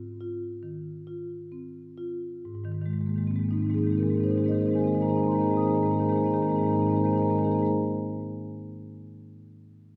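A solo marimba played with soft mallets opens this brief cut from a longer contemporary classical piece, its rosewood bars giving a woody, round and mellow tone that sits up front in the sound. The mood is warm and playful, set in Ab major and 4/4 at roughly 63-71 BPM with a loose, rubato feel. The opening passage rests on an Ab6 chord and slows down over its first 2.5 seconds, and then a new section begins at 2.5 seconds on an Abadd9 harmony. The instrument ranges from Ab2 up to Eb6 across its 7.7 seconds. A generous, wet reverb with a two-second tail places the marimba in a church or concert hall, letting each note bloom and linger in the space.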